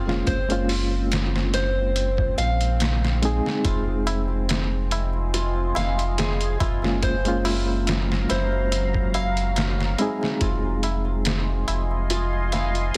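A dense, heavily limited modern master with little reverb gives this cinematic, hypnotic trip hop fragment a close, compact sound at 71 BPM in 4/4, with a light swing on the sixteenths and a dark F phrygian colour. A sampler-style drum kit sits up front, pitched down, muffled and overdriven, with a thumpy kick, a medium-tuned snare and hi-hat. Beneath it a round sine sub bass holds the low end, while a reedy electric piano with fast tremolo and tape echo comps through the Gbmaj7 to Fm7 changes. A bright nylon-string guitar, fingerpicked in a classical manner, lays arpeggios over this, also touched by tape echo. A very quiet, tense, string-like drone hovers throughout, high-tuned tabla with a short ring enters in the background at 3.6 seconds, and a deep, moody, evolving ambient pad with chorus swells in with sustained chords at 4.4 seconds.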